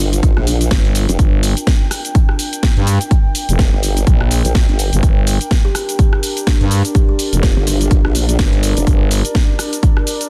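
Bass house at 125 BPM in G minor, bouncy and gritty with a 16th-note swing, built on a punchy, up-front electronic kick and a house kit with cracking snare, rim click, hi-hat and shaker, while a growling FM bass and a detuned, formant-filtered wobble bass both pump against the kick, a warbly, nostalgic tape-like pad with chorus sits dark in the background from 0.3 seconds, and a woody, delayed kalimba rings briefly at the start before returning from 5.6 to 8.1 seconds, all held on a G minor chord in a dense, heavily limited, dry mix cut from a longer piece.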